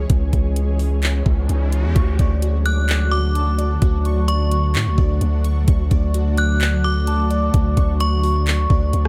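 Atmospheric cloud-rap in a dreamy, floating mood, this short excerpt moves at 129 BPM in a half-time 4/4 feel, centered on D lydian. An ethereal, detuned pad holds sustained chords from the start, its slow attack and long release softened by ensemble chorus and built-in reverb while sidechain pumping gives it a gentle breathing motion, and a deep, sine-toned 808-style bass sits up front beneath it. A produced trap kit enters almost at once with a knocking kick, warm hats, handclaps and rim clicks, and a brief electronic riser between 1.1 and 2.0 s lifts the opening C#m toward a shift to Dmaj7 at 2.0 s. From there, glassy digital keys with a noise layer and filter sweep spin out arpeggios through chorus and tape echo, joined at 2.7 s by a metallic, inharmonic FM bell whose bright, warbling vintage melody rings high above the mix. The whole piece floats in a digital ambience, keeping the low end up front while the upper layers drift.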